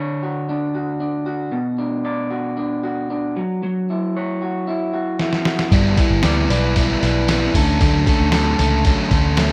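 A twangy, slightly broken-up electric guitar with tape echo plays bright arpeggios from the start of this breezy, nostalgic jangly indie pop excerpt. A muffled, thumpy sampler-style kit enters with a fill at 5.2 seconds, and a crunchy overdriven guitar and a dark, foam-muted picked bass join at 5.7 seconds, all set in light digital ambience.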